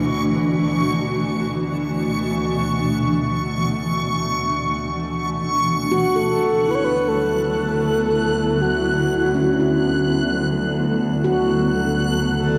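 Bathed in a vast cathedral reverb, this weightless, serene ambient passage in free time, cut from a longer piece, floats on a cloudy granular pad holding a Bm9/D chord over a veiled, muted cello section, with a bright reversed texture swelling high above; a filter sweep moves across the pad from 5.5 s, a close-miked, ringing handpan adds tape-echoed arpeggios from 5.9 s, and a breathy flute-like synth lead with chorus and vibrato carries the melody from 6.3 s.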